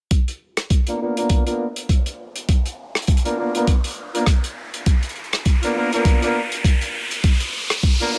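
Gritty and playful, this glitch hop build-up sets a knocking, overdriven electronic kick up front over a small-room soul drum kit of hi-hat and rim click with a rolled-off top, while a brilliant, close-miked horn section in octaves delivers pumping stabs with light vibrato, digital delay and a filter sweep, and an electronic riser enters at 1.8 seconds.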